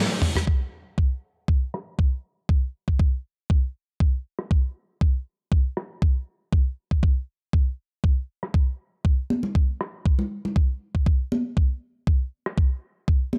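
Nu-disco at 119 BPM with a light 16th-note swing and a sunny, feel-good mood, this drum-led cut from a longer piece opens with a brief break, drum fill and band accent before a thumpy, tape-warm sampler-style electronic kick sits up front beside a dry, damped 70s acoustic kit of hi-hat, rim click and toms, whose hats, toms and snare are all softened by low-pass filtering, and soft-handed congas join at 9.3 seconds, all in a gritty hardware sound with light reverb and small room ambience.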